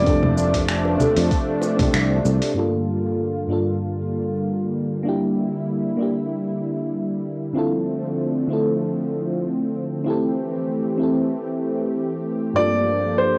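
Warm and relaxed, this short cut from a longer sunset chillout piece moves at 96 BPM in 4/4 with a gentle swing on the sixteenths. A mellow FM electric piano, round and dark with chorus and phaser, carries the accompaniment throughout, while a lush, thick unison pad with a nasal sawtooth edge holds sustained chords beneath it, and a filter sweep runs over the pad from 2.6 seconds onward. A concert grand piano with a deep low end and tape echo sketches the melody briefly at the start and again near the close at 12.6 seconds. In the opening seconds, a growly fretless bass, a soft electronic kick, a gritty sampler-style kit of congas, finger snaps, hi-hat and shaker, and very quiet high-tuned bongos all play together, and these parts drop away around a band accent at 1.9 seconds. The harmony drifts through Gm7, Em7b5, Dm7 and Am7, and the whole home cassette recording carries a dusty tape character in a moderate studio reverb.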